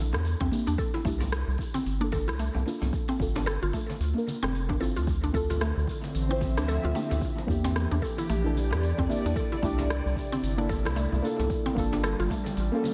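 Set in light reverb and digital ambience with a heavy wash of echo, this meditative, mystical organic downtempo passage swings gently, its deep, mellow chord stab filtered in a sweep and pumping under analog chorus and delay while a woody, mallet-like FM synth pluck spins arpeggios through chorus and delay. A round, dark analog bass sits up front and pumps beneath a tape-warm layered electronic kick, crisp hi-hats with rim click and shaker from the electronic kit, and bright, band-limited congas echoing in the background. At 5.7 s an airy, breathy, warbling pad arrives with slow-blooming sustained chords, drifting over the cycling minor and ninth harmonies.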